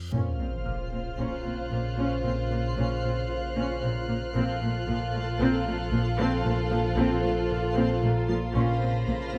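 A huge reverse cymbal and sub drop open this eerie, mysterious suspense film-score excerpt in Bb harmonic minor at a slow 57 BPM, over an ominous, rumbling, detuned drone; at 0.1 s soft sul tasto strings enter, with a distant violin section carrying the very quiet melody, a second, intimate violin line, woody violas, floating cellos and a shadowy double bass section on Bb1, joined by dark, roomy French horn chords, a ringing fingerpicked harp riff, a sparkling granular shimmer from 0.6 s, a high, pure violin texture and a delicate, bell-like celesta, on a moderate scoring stage.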